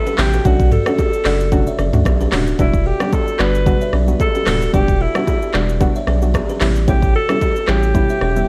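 A breathy alto saxophone opens this mellow, smooth afrobeats excerpt at 0.0 seconds, carrying the melody with an intimate, whispered vibrato and a soft attack, over a soft, round pluck whose dark, chorused chords decay gently beneath it. Almost at once a deep, thick sub bass arrives, saturated and up front, along with an electronic afro-pop drum kit whose deep kick, metallic hats, handclaps, rim clicks, shaker and toms sit close in the mix. A buzzing kalimba repeats a woody, ringing riff through a delay, while bongos and congas sound bright but distant, set back in a large room. The groove moves at 112 BPM in 4/4 with a light swing on the sixteenths, in E dorian, resting on Em9 from 0.4 seconds before shifting to A7 at 6.6 seconds. The whole recording is dry and has the worn, warbling pitch drift of old cassette tape, giving it a hazy, vintage character.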